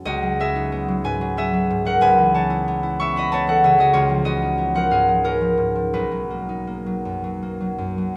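A bright, ringing concert harp opens this dreamy, peaceful classical solo, fingerpicked up front across a range from B1 to C#6 in B major, with the tuning set at A4 = 444 Hz. The 3/4 pulse sits around 92 BPM but moves with uneven, rubato beats as the chords pass from C#m11 through Aadd9/C# and C#9 before settling on Bmaj7 near 5.9 seconds. A moderate concert hall reverb gives the acoustic harp space over this short 8.2-second cut from a longer piece.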